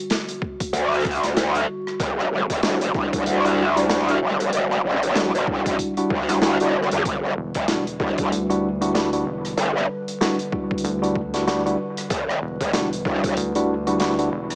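A warbling, nostalgic pad holds a dark Em9 chord in the background from the start, pumping under chorus and its own reverb, as an acoustic rock kit's hi-hat, rim click and snare join a gritty, thumpy pitched-down kick in a swung, funky, gritty glitch hop groove, while an aggressive, wobbling growl bass sits up front, a worn, slightly out-of-tune electric piano adds lightly overdriven stabs with dub echo from 2.6 seconds, and a rubbery, nasal square bass enters at 7.4 seconds, all under vinyl crackle and a small-speaker sound in this excerpt from a longer piece.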